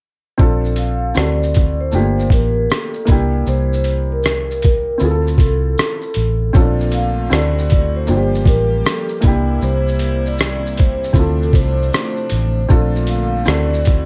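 A woody, short-sustain upright piano, a dark, round foam-muted electric bass and a gritty, pitched-down boom bap sampler kit with a thumpy kick open this hazy, reflective lo-fi hip hop excerpt with a swung feel. A mellow, ringing vibraphone melody with slow motor vibrato joins at 0.8 s, a jingly tambourine in the background at 1.2 s, and from 6.5 s a floating, soft-attack bowed string section holds sustained chords, all under light reverb and a cassette-tape sheen.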